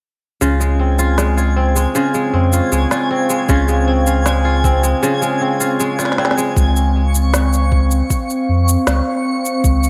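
A straight 4/4 pulse at 78 BPM from a tape-softened electronic shaker and woody snare carries this pastoral, warm folktronica excerpt in Db major, where a crisp, fingerpicked kora rings out filtered, delayed arpeggios up front until 8.4 s over a deep, round sine sub bass, while a warbling, nostalgic lo-fi pad holds chorused, sustained chords from 1.3 s, a twinkling granular layer sparkles high above, and a soft electronic kick slips in at 3.5 s in the background, the mix soaked in dreamy plate reverb.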